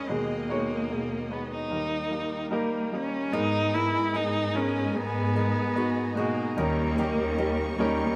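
A focused, up-front solo cello sings a longing, vibrato-rich melody over polished grand piano and a lush, portamento-tinged string section in this emotional 74 BPM pop ballad in G# minor, joined at 3.3 s by fingerpicked steel-string acoustic guitar arpeggios in the background, with finger squeak audible, and a bowed cello section bass line, the band playing together in one room with light reverb.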